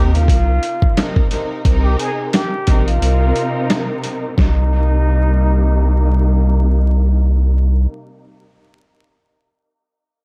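Dark and gritty, this short boom-bap hip-hop excerpt in C minor moves at 88 BPM with a swung sixteenth feel over a Cm7 chord, set in an echo-heavy digital ambience laced with vinyl crackle. A round, deep analog bass sits up front beside a muffled, pitched-down sampler-style drum kit with a thumpy kick and medium-tuned snare, the drums dropping out at 4.6 seconds after the kick sits out from 3.0 to 4.4 seconds. Behind them, a lush bowed string section and a distant, breathy trumpet with a plunger mute, playing a whispered jazz-style melody until 6.4 seconds, both drift through a low-pass filter and dub echo.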